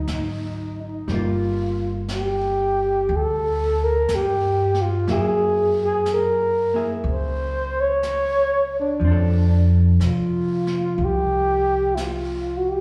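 Heard as a live gig through the venue's PA with recital-hall reverb and small-room ambience, this tender, romantic swung jazz ballad fragment features a breathy, whispered flugelhorn carrying the melody up front with vibrato and scooped notes, a dark, clean hollow-body electric guitar accompanying beneath, a woody pizzicato upright bass, and a quiet brushed drum kit entering at 0.1 s, with slapback echo on the horn, guitar and drums as the chords move from D7b9 through Gm7 and Gb9 to F6.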